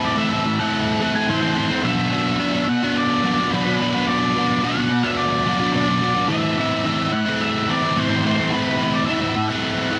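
Hazy and wistful, this straight-feel rock fragment sets a double-tracked, overdriven electric guitar riff up front, thickened with analog chorus, beneath a dark, fuzz-laden octave-fuzz lead guitar melody carrying slapback echo, all bathed in a huge ambient reverb and pressed into a dense, heavily limited modern master.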